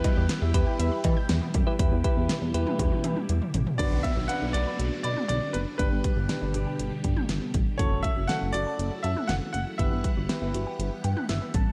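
A nocturnal, driving synth-pop excerpt at 120 BPM opens with a punchy, gated-reverb pop drum kit and a glossy, chorused pulse-wave synth bass up front, beneath soft, round electric-piano-like synth keys with chorus and tremolo, a swirling phased string machine holding sustained chords, and a warbly, lo-fi pluck spinning tape-echoed arpeggios in the background. A brilliant grand piano with tape echo sounds briefly at the start, then carries the melody from 3.8 seconds, when the chords move from Em to Bm and a faint downlifter sinks in behind it after a drum fill. The progression continues through G and F#m7 to Emadd9/G, and the keys play a short fill as the passage breaks off at 11.7 seconds.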